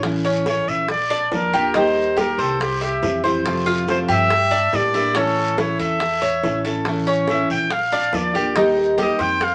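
Latin music in the Cuban son and guajira tradition, this danceable, nostalgic excerpt moves at 141 BPM in a straight 4/4, cut from a longer piece. A fingerpicked nylon-string guitar sits up front with a classical touch, while the Cuban tres spins picked arpeggios whose doubled strings, some in octaves, give a metallic shimmer. Underneath, a pizzicato upright bass with gut strings adds a woody, thumpy low end, and tight, high-tuned bongos played with hard hands sit close and dry in the background beside a raspy guiro. Entering at 0.5 seconds, a clear trumpet takes the solo melody up front in a pop style, with light vibrato and scooped notes. The harmony travels from A through Bb, Eb, C, F and Gm before returning to A, and a wet studio reverb gives the ensemble a short, glossy space.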